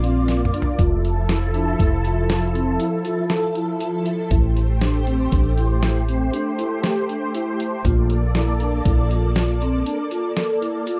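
Progressive instrumental band music in 7/4 at 119 BPM, this short excerpt in F major feels intricate and driving with a straight pulse. A boom bap sampler-style drum kit sits up front with a gritty, pitched-down, compressed sound, a thumpy kick and a medium-tuned snare, playing a drum fill from 0.3 to 0.8 seconds. A woody fretless electric bass, dark and round with a hollow-body character, holds the low end until 9.8 seconds. A silky analog string pad with a slow attack, ensemble chorus and vibrato sustains the harmony. A vibraphone played with soft mallets and the motor off rings out mellow arpeggios in a boxy small room. The chords move from Bb to Fmaj7, Am7 and Bbmaj7 in a dry, close 1970s-style studio sound.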